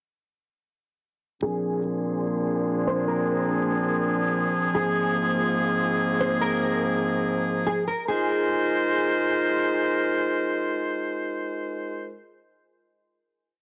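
This atmospheric cloud-rap piece in free time drifts in Ab lydian with a blissful, floating mood, tuned to A4 = 439 Hz. A clear, close-miked woodwind section sits up front from 1.4 to 12.2 s, holding tight, classical-style sustained chords with light vibrato, moving from Bb9 to Ab69 at 4.7 s under a low-pass filter. A mellow, dark electric guitar plays a sparse, fingered looping melody, repeated like a sampled loop and softened by analog chorus, delay and a low-pass filter, while a breathy, wind-like tuned noise texture hovers in the background with its own built-in reverb. A filter sweep runs through the breakdown from 1.4 to 8.1 s before the music settles onto a final chord. The whole is wrapped in a lush hall reverb yet keeps a gritty hardware character, with transformer saturation and cassette tape colouring the sound.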